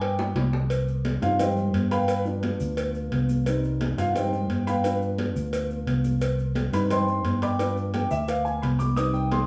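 A dark, woody upright piano with audible action noise solos up front from the start, over an amped fingered electric bass, bright, high-tuned congas set back in a large room, and low-tuned, vintage cowbell and bongos; a drum fill at 0.2 s opens this passionate, driving salsa excerpt at 174 BPM in C harmonic minor, grainy, dry maracas join at 0.7 s, and the harmony alternates between Cm and G7 in a wet studio reverb heard from further back in the room.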